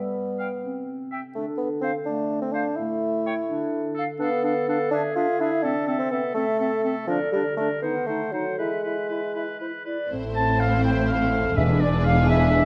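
Dramatic and stormy, this fast romantic orchestral passage is cut from a longer piece, moving in a rubato 6/8 at 83 beats per minute and settling into A minor from 4.2 s. It opens with woodwinds and harp: an up-front, mellow bassoon carries the accompaniment, while a distant clarinet, a clear oboe with light vibrato and a pure, crisp-attacked silver flute weave second lines around it. A ringing, fingerpicked concert harp spreads arpeggios across a broad register. The harmony grows restless through seventh chords, a half-diminished chord and a diminished seventh before arriving on E. At 10.1 s the strings enter, with a lush, rich violin melody sung with portamento, a background violin line, a very quiet viola part and a tight, very quiet horn section holding sustained chords, all over a foundation of dark, woody cellos and warm double basses. Close, dry timpani struck with hard mallets touch in briefly at 11.6 s, and the scene is set in a moderate scoring-stage reverb.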